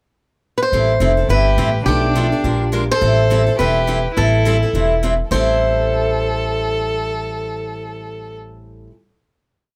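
A parlour steel-string guitar drives a four-to-the-bar swing rhythm, short and accented on two and four with audible finger squeak, while a woody, thumpy gut-string upright bass plays pizzicato root and fifth on two beats with walk-ups after a brief pickup bar. This fiery, virtuosic jazz manouche piece puts a bright, boxy picked swing guitar up front with a melody of hook phrases, and from 1.3 seconds a single bowed violin adds a smooth, even harmony line, mostly in thirds with light vibrato. A moderate small-room reverb holds the acoustic strings close, and the piece settles on a final chord at 5.3 seconds.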